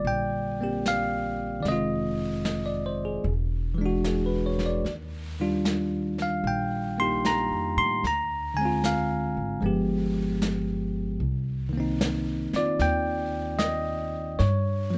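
A lightly reverberant, clean sound frames this wistful, melancholic jazz ballad fragment, where an up-front, bell-like tine electric piano carries the chords over a woody, thumpy pizzicato upright bass and a dark, smooth vintage brush kit of brushed snare and hi-hat entering at 0.1 seconds, the harmony drifting through Gm7, Fm7 and E9 toward Ebmaj9 before settling on Cm7 at 11.2 seconds.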